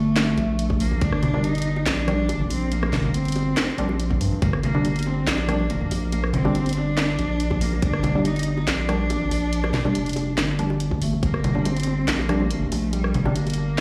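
A rich, bowed cello played by one player sits up front in this dark, brooding deep dubstep excerpt, its smooth, even line carrying vibrato and trailing a dub echo over a single G minor chord. Beneath it, a deep, thick saturated sub bass with a fast attack holds sustained notes close to the listener, anchoring the half-time 4/4 feel. A garage drum kit with a cracking snare, handclaps, hi-hat and rim click comes in at 0.2 seconds together with ringing bongos and congas that sit close and dry in the background, sent through dub echo. A tight, layered electronic kick lands only in brief hits, first at 0.7 seconds and then roughly every three and a half seconds. From 1.3 seconds a muted, mellow sawtooth chord stab with a filter pluck and short decay lurks behind, coloured by subtle chorus, cassette tape grit and dub echo. The whole mix has the sound of a big sound system in a bare room, with large studio reverb adding space around the parts.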